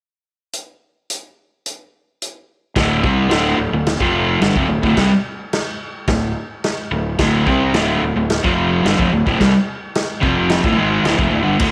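Raw and rowdy, this short garage rock excerpt opens with a vintage acoustic drum kit alone, punchy in the kick and rolled off at the top, sitting up front in a studio room. At 2.8 seconds a double-tracked, overdriven garage guitar riff bursts in on a D5 chord with spring reverb, joined by a dark, round fuzz bass with its own overdrive, all under light reverb and studio ambience.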